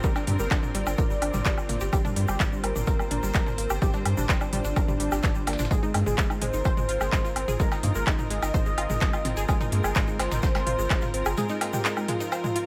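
A straight 4/4 pulse comes from a punchy, up-front electronic kick with studio reverb, joined at 0.2 s by a layered techno drum kit of handclaps, smooth hats, toms and woodblock, while a gritty, tape-toned sampler-style soul kit of hi-hat, filtered snare and tambourine sits in the background beside a grainy, distant egg shaker. In this melancholic, dark melodic techno excerpt, a thick, bold detuned sawtooth unison lead carries the melody with vibrato and dub echo over lush, echoing unison-pluck arpeggios, a round, deep analog bass and a biting, distant symphonic string section. All four of these parts have sidechain pumping as the harmony moves from Gm to Ab/G at 5.7 s.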